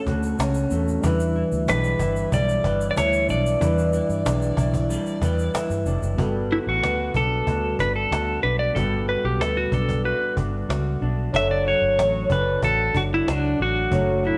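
Recorded as a band playing live in a moderate stone room, this nostalgic, laid-back passage of indie bedroom pop, cut from a longer piece, sets a compressed, up-front lap steel melody with volume swells over a dark, slightly broken-up picked electric guitar with warbly pitch drift, a worn, slightly out-of-tune tine electric piano in the background, a round, foam-muted fingered bass and a snappy, close cajon. The harmony moves from Dmaj7 to Em7, and then a grainy tube shaker drops out at 6.2 seconds as the slide guitar takes a solo over Gmaj9 and Dmaj7/F# chords.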